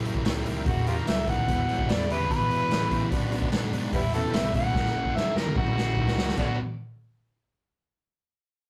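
A heavy, smoky slice of blues rock with a southern rock edge opens on a thick, double-tracked fuzz guitar riff, a punchy vintage drum kit with dark cymbals sitting up front, a very quiet overdriven picked bass, and a gritty tonewheel organ holding sustained chords in the background through a slow rotary speaker and chorus vibrato. At 0.7 seconds an amplified, overdriven harmonica takes the solo melody up front, jazz-inflected, with light vibrato, tongue slaps and scooped notes. Alongside it, a dark, slightly broken-up lead guitar plays a compressed, very quiet second line. The harmony moves through F#7b9, Em and Bm, and a drum fill from 4.7 seconds carries the band back to Bm as a new section begins. The rough rehearsal-room sound, with tube saturation and a moderate studio reverb, gives the short cut from a longer piece a raw, live character.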